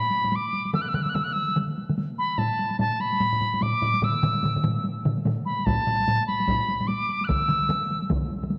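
A worn, warbly cassette sound with drifting pitch and a wet concert-hall reverb surrounds this powerful, ceremonial cut from a longer piece of Japanese traditional taiko music, swung at 146 BPM in 4/4 in E suspended pentatonic. Up front, a reedy piccolo with vibrato and a crisp attack carries the melody between A5 and F#6. Beneath it play two solo taiko drums struck with heavy sticks in a small room, a close, dry taiko ensemble on hard sticks that joins at 0.7 seconds, and a second heavy-sticked taiko ensemble in a live room that enters at 5.7 seconds.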